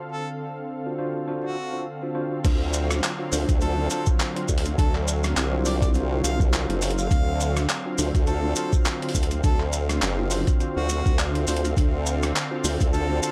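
A dry, gritty recording opens this funky, playful glitch hop excerpt at 103 BPM in D minor pentatonic, where a smooth, detuned analog pad with chorus, tremolo and sidechain pumping sustains a D7#9 chord under a filter sweep. A soft-attacked harmonica with light vibrato carries the melody through analog delay, and a mellow tine electric piano adds clean stabs that pump and echo. At 2.4 seconds the drop lands with an up-front thumpy kick, a sampler-style boom bap kit of crash, handclaps, hi-hat and rim click, grainy maracas, and a wobbling, formant-filtered sawtooth bass with chorus that sits up front in the mix.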